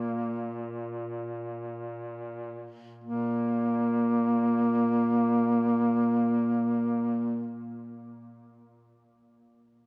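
Longing and mournful, this short cut from a longer Caucasian folk lament unfolds in free time, tuned to A4 = 443 Hz. A dark duduk carries the melody up front, around Bb3, its tone smooth at the top and shaded with vibrato and scooped notes in a traditional folk manner. Beneath it, a clear duduk with a vintage character holds a drone on Bb2 at a much lower level, also colored by vibrato and scooped notes. Both duduks sound from the very start until 7.5 s, and the opening passage slows down before a new section begins at 3.0 s. A wet cathedral reverb, with a decay of 5.8 s, gives the lament a vast, echoing space.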